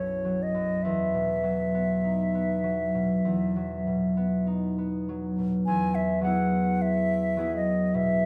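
Pastoral and luminous, this short excerpt from a classical, impressionist duo for flute and harp drifts at a slow, rubato 48-54 BPM in 4/4 and E major. The concert flute carries the melody up front with a pure, straight tone and crisp attack, while the concert harp supplies a fingerpicked, ringing accompaniment spanning low to middle register, also up close. Suspended, open harmonies settle from Bsus24 to Esus2 and then Eadd9 at 5.6 seconds, all bathed in the wet reverb of a recital hall.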